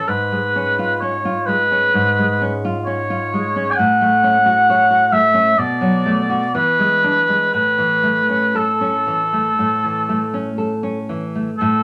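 A small room lends moderate reverb to this intimate recording, a short passage cut from a longer romantic duo for oboe and classical guitar. The mood is warm and tender, moving at a slow, rubato pace of roughly 58-67 BPM in 4/4, in A major and tuned slightly low to A4 = 437 Hz. The oboe carries the melody with a mellow, roomy tone and vibrato, singing in a classical style as the featured solo voice. Beneath it, the nylon-string guitar supplies a dark, fingerpicked accompaniment, with the occasional finger squeak adding a human touch. The harmony drifts from C#7/G# through F#m/A, Bm7 and E7 before settling on A at 7.5 seconds, and both instruments play throughout the passage.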